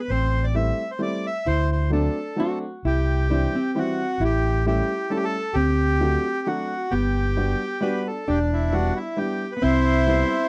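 A swung 3/4 pulse at 132 BPM drives this musette waltz in G major, with its eighth notes carrying a 54% swing. The mood is whirling and bittersweet. A reedy, bright bandoneon carries the melody up front, while a dark, clean hollow-body jazz guitar traces a second line alongside it. An overdriven, punchy fingered electric bass sits prominently with an amped edge, and a woody, boxy upright piano with short sustain adds accompaniment from 0.5 seconds. The harmony moves through Am7, D7 and C toward Gmaj7, then shifts at 8.3 seconds to Em7 and Cmaj7. The dry, close sound of a 1970s-style studio keeps this fragment of a longer piece intimate.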